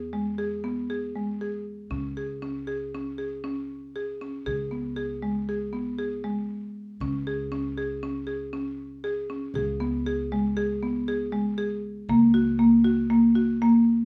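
Hypnotic and pensive, this contemporary chamber piece moves at 118 BPM in an uneven 5/4 with a straight feel, in C# minor and tuned slightly flat to A4 = 437 Hz. A buzzing, dry marimba played with medium hard mallets sits up front with arpeggios, while a dark, thumpy pizzicato upright bass with steel strings holds the low end under light studio reverb. Cut from a longer work, the passage pauses briefly from 6.5 to 7.0 seconds before a second section begins, drifting through harmonies of E, C#5 and a rootless D#m7/C#.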